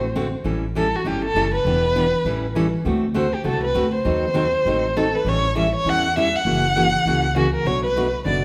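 A bowed solo violin carries the melody up front, its tone close and warm with expressive vibrato, soft attacks and gliding portamento between notes. This charming, playful slice of acoustic string swing in the jazz manouche style runs 8.4 seconds, cut from a longer piece, at 200 BPM in 4/4 with a swung eighth-note feel in A mixolydian, tuned slightly high to A4 = 441 Hz. A picked steel-string jumbo acoustic guitar also sits up front as accompaniment, warm and full-bodied, with audible finger squeaks along the strings. Underneath, a pizzicato upright bass adds a woody, dark, growly and thumpy low end. The harmony moves through A7, Em7, back to A7, then D7, a D#dim7 passing chord, A7 again, then F#7 and Bm7, all bathed in the lush reverb of a recital hall or church.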